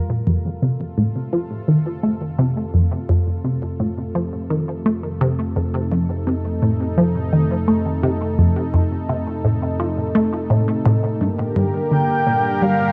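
A squelchy, up-front blip pluck drives this luminous, cosmic stretch of sequencer-driven space music at 85 BPM in F mixolydian, its low riff coloured by phaser and tape echo. Beneath it, a full-bodied, ring-modulated pad fades in with sustained chords moving from F to Gm at 11.2 s, and a nasal analog drone fades in as bass from 1.8 s. A breathy, flute-like lead with tremolo and vibrato arrives at 11.9 s, all set in a moderate plate reverb in this cut from a longer piece.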